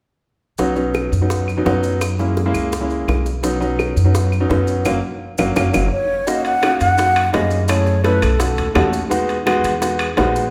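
Sunny and lively, this short Afro-Cuban jazz excerpt moves at a brisk 169 BPM in a straight 4/4, centered in B major. A smooth, vintage grand piano sits up front with chordal accompaniment, joined by a dark, thumpy pizzicato upright bass that is equally prominent, while tight, high-tuned bongos and grainy, close maracas fill the background, with woody, compressed claves entering at 0.9 seconds. The harmony moves through colorful chords such as Badd9, F#7 and F#69 before settling toward Emaj9, and a band accent from 4.9 seconds, with a drum fill at 5.4 seconds, sets up the change into the second section at 6.3 seconds. A breathy, hollow concert flute carries the melody with vibrato and tongued notes from 5.9 to 8.9 seconds, and ringing metal-shell timbales join at 6.4 seconds. The whole group sounds set in a church or concert hall, wrapped in a wet reverb that lends an airy, resonant space.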